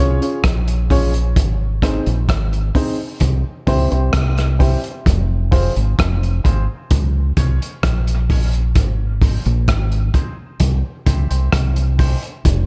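Dub reggae at a slow 65 BPM in a straight 4/4, this short excerpt cut from a longer piece feels spacious and heavy. A deep, round fingered electric bass sits up front from the very start, punchy and dark, holding the low end across the whole clip. A crunchy breakbeat drum kit joins at 0.2 seconds with hi-hat, kick drum and rim click, its saturated, gritty sound and tight kick pushed forward in the mix with a rolled-off top. A dark upright piano plays stabs with a mellow, woody character, sitting further back and treated with a high-pass filter and dub echo, with a filter sweep running over it from 1.4 seconds to 12.5 seconds, just past the piano's final stab at 12.2 seconds. The harmony cycles through Db, Ab, C and F minor, all heard in a small room ambience.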